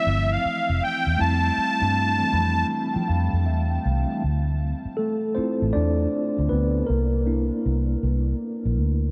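R&B and neo-soul in a soulful, late-night mood, this brief cut from a longer piece opens with a reedy, shimmering musette accordion melody carrying tape echo until 2.7 seconds, over a mellow tine electric piano that adds a fill and then takes a solo from 4.2 seconds, while a dark, round, foam-muted electric bass sits up front, all bathed in a dreamy, huge ambient reverb.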